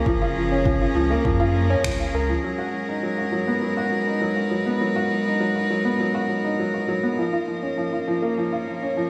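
A moderate scoring-stage reverb mixes with a small room ambience, giving this melancholic, hypnotic fragment of piano and strings electronica a close yet spacious sound. An intimate chamber string quartet, one player per line with light vibrato and an airy sul tasto bow, holds soft-attack sustained chords up front, pulsing with sidechain pumping. A woody, slightly detuned upright piano with short sustain plays a riff through tape echo, sitting present in the mix. Briefly at the start, a deep, round sine sub bass with sidechain pumping and a punchy, layered electronic kick carry the low end. A deep house drum kit of finger snaps and hi-hat arrives on a band accent at 1.8 seconds, its snare and hats dulled by low-pass filters, as the harmony moves from F#maj7 to G#m7 at 2.4 seconds and later to A#m.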